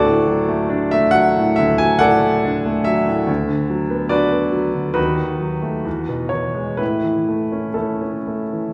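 A clear, natural grand piano plays alone across this brief excerpt of a romantic classical character piece, its lyrical, passionate line unfolding in a free rubato over a span from D2 to G#5. The harmony moves from D through Bm/D and D#dim to E, arriving on A at 6.8 seconds. The piano sits up front, yet it is heard from further back in a recital hall whose wet reverb lingers around each phrase.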